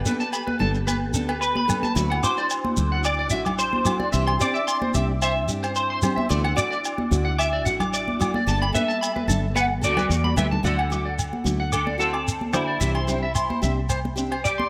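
A clean, picked electric guitar carries a sunny solo melody through the first 10.6 seconds of this danceable highlife guitar band excerpt in D mixolydian at 110 BPM, bathed in ensemble chorus and tape echo, while a twangy, slightly broken-up second electric guitar spins high arpeggios with lush chorus and its own tape echo. Underneath, a round, dark fingered electric bass sits up front, a picked steel-string acoustic guitar plays accompaniment, and a smooth tonewheel organ holds background chords through a slow rotary speaker until it drops out at 10.6 seconds. Close, dry percussion from high-tuned ringing congas, a grainy shekere and agogo bells drives the straight 4/4 groove, with a drum fill at 10.1 seconds leading into the closing section over add9 chords in light studio reverb.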